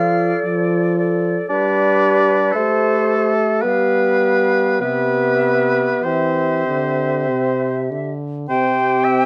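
A dark, warm production with light reverb frames this brief passage, cut from a longer slow romantic movement for wind quintet in C major. The mood is serene and tender, moving in a gentle 3/4 at roughly 48-58 BPM with a rubato feel, and the harmony drifts from Dm/F through G, Am7 and G7 before settling on C at 4.8 seconds. An airy silver concert flute carries the melody with vibrato and tongued notes, sounding slightly distant, while a clear, close-miked oboe sings a second line just beneath it. Up front, a clear, present French horn supports the accompaniment in its lower register alongside a shadowy clarinet in a narrow range. A mellow bassoon with light vibrato anchors the bass from a roomy distance, and all five instruments play together throughout the 9.3 seconds.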